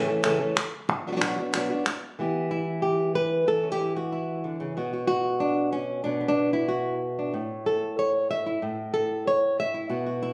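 A fingerpicked acoustic flamenco guitar opens this fiery, passionate excerpt at a brisk 186 BPM in 4/4, its warm, boxy, up-front tone carrying the melody with audible finger squeak as the chords move from A to Bm, then Em. Crisp, close palmas hand claps join almost at once and drop out at 2.0 seconds, and the guitar carries on through Bm and back to A until 10.3 seconds. The sound has the intimate feel of a phone recording in the room, given light reverb and compression.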